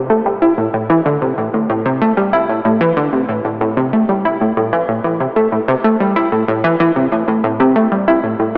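Ambient, expansive and cosmic in mood, this short excerpt features a lone plucky analog bass, punchy and funky with a fast attack and decaying filter pluck, sitting up front as it plays from 0.0 to 8.5 seconds. Lush chorus and tape echo thicken its sawtooth and pulse-wave tone, while a long, wet plate reverb opens up the space. The whole recording carries the worn, warbling character of old cassette tape, with drifting pitch and a small-speaker sound.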